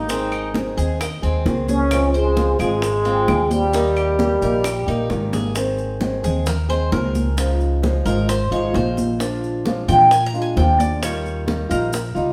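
A straight 4/4 Cuban son and guajira groove at 132 BPM in Ab major sets a sunny mood as a plunger-muted trombone with light vibrato carries the wah-wah melody up front until 5.3 s, over a dark, boxy fingerpicked old acoustic guitar, a thumpy gut-string upright bass, round low-tuned bongos, bright high-tuned congas, grainy maracas and woody claves, and after a drum fill at 5.3 s the metallic, double-strung Cuban tres, arpeggiating from the start, takes a solo from 5.6 s, with the band playing together in one room under a moderate studio reverb.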